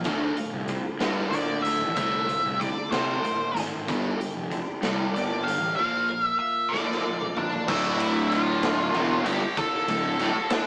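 This rough rehearsal-room recording has a small-speaker sound and a stone room's echo, framing a brooding, angsty stretch of quiet-loud alternative rock in D minor at 63 BPM in a straight 6/8. Up front, a gritty, saturated garage drum kit with a boomy kick and a growly fuzz bass sit beneath a dark octave-fuzz lead guitar that enters at 1.3 seconds with delay. Further back, a twangy twelve-string electric guitar plays arpeggios through phaser and delay while an overdriven stack guitar picks a riff. After a drum fill, the twelve-string stops at 7.7 seconds as a second cranked stack guitar riff joins, and the harmony moves from Dm7, G5 and Bb to D minor.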